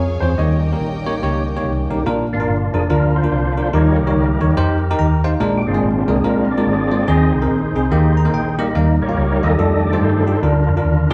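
Uplifting and hopeful, this uptempo gospel passage swings at 143 BPM in 4/4, opening with a short-sustained grand piano melody and a lush, bowed string section that both fall away by 2.0 seconds. From 2.1 seconds the lightly overdriven tonewheel organ, with its percussive attack, chorus vibrato and slow rotary speaker, takes a solo over chords moving through Bb, Eb, Ab and F13, while a bell-like, clean tine electric piano adds fills starting around 4.8 seconds. Underneath, a dark, round hollow-body bass sits up front, and the whole band rings in a large, wet room.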